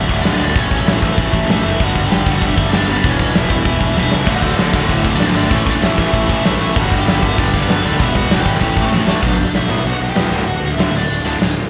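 A fuzz-laden, growly picked bass sits up front from the opening instant, joined at once by an overdriven lead guitar melody and two picked, distorted rhythm guitars driving riffs, one of them double-tracked and very quiet. This rebellious, energetic punk rock excerpt runs at a straight 194 BPM in 4/4 in D major, with a big acoustic rock kit close in front, its punchy kick, medium-tuned snare, hi-hat, crash and splash cymbals sounding dark and smooth with a rolled-off top. After a drum fill, a second overdriven rhythm guitar with slapback echo enters in the background at 4.3 seconds, thickening the bright, picked guitar sound beneath the echoing lead. The chords move through D, A, G and E minor before a change at 9.2 seconds, where the quiet double-tracked guitar drops out and the harmony turns to B minor and back to D. The whole thing has the raw feel of a live gig heard through a venue's PA, with a recital-hall ambience around it.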